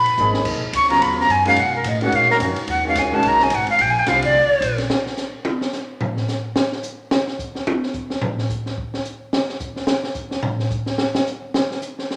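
Swinging at a brisk 216 BPM in 4/4, this intense, spiritual modal jazz fragment in G# dorian opens with a breathy, chiffy flute solo carrying vibrato and a crisp attack, set over a woody, thumpy pizzicato upright bass and brilliant grand piano accompaniment moving from G#m9 to A#69. An up-front open drum kit with a high-tuned snare and boomy kick adds an early fill, and by 4.9 s the flute, bass and piano have fallen away, leaving an unaccompanied drum solo across crash, ride, hi-hat and toms until 12.2 s. A large studio reverb gives the mix a spacious, wet sheen.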